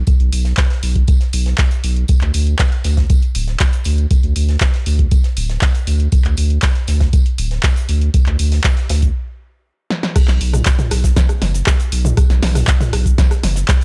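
Acid house with a hypnotic, trippy mood, built on a deep, thick saturated sub bass with sidechain pumping and an up-front electronic kick drum, while a punchy, tape-tinged analog drum machine adds claps, rim clicks, cabasa, toms and crash, and an acoustic studio kit sits in the background with filtered hi-hats, snare and tambourine, all kept dry before a stop at 9.1 seconds, a drum fill at 9.9 seconds and a drop at 10.2 seconds.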